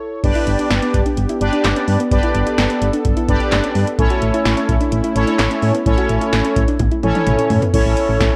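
This bright, upbeat synth-pop fragment opens on a smooth, detuned analog pad holding sustained chords with a slow attack and chorus. An instant later a dry, electronic drum machine enters up front with a deep kick, punchy snare, metallic hi-hats, handclaps, toms and crash cymbal. A dark, round FM bass and a bold, fat synth brass with sawtooth bite, a filter sweep and chorus enter alongside it. A soft, mellow pluck sits in the background, spinning gentle arpeggios through chorus and delay. The harmony moves from G to A at 4.0 seconds, and a drum fill runs from 6.8 to 7.7 seconds. The whole piece carries light reverb and the worn, warbling pitch drift of old cassette tape.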